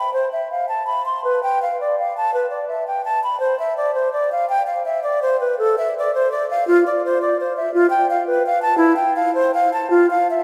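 This is a classical, baroque-style fantasia for unaccompanied flute in C major, a flowing, radiant fragment cut from a longer piece and lasting about 10.4 seconds. It moves in a slow 6/8 at 56 dotted-quarter beats per minute, with a free, rubato feel that lets each phrase breathe. The baroque flute plays alone throughout, ranging from E4 up to C6, its wooden, airy, warm tone marked by vibrato and a crisp attack. The instrument sounds close-miked and up front, yet it sits inside a wet cathedral reverb whose 4.8-second decay makes the room feel heard from further back.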